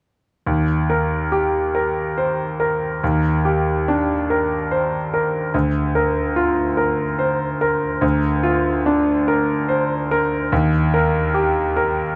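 A bright concert grand piano enters at 0.5 s alone, playing an accompaniment in a flexible, rubato triple metre that carries an intimate, hopeful classical mood. Its deep bass and up-front presence are captured by close, detailed microphones in a dry room, as the harmony moves from Ebmaj7 to Bb/D and settles on Eb. The piano plays until 12.2 s in this short fragment cut from a longer piece.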